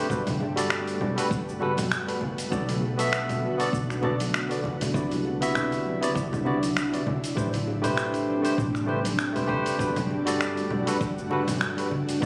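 Bathed in a lush digital hall reverb and captured on a phone in the room, this relaxed sunset chillout excerpt has a hazy, roomy sheen. At 99 BPM in 4/4 with a gentle sixteenth-note swing, it sits in G major and moves through Gmaj9, Bm7, Cmaj9#11 and Am9 before returning to Gmaj9. Up front, a barky tine electric piano plays the accompaniment, lightly overdriven through a combo amp with delay, while a shimmering ambient pad holds ethereal, detuned chords with a slow attack, chorus and octave-up glow. A woody fretless electric bass anchors the low end with a dark, growly, round tone from tube saturation. A gritty, tape-warm sampler-style soul kit of congas, finger snaps, hi-hat and shaker sits forward from 0.1 s alongside a deep, layered electronic kick, with vintage-sounding congas and bongos joining further back.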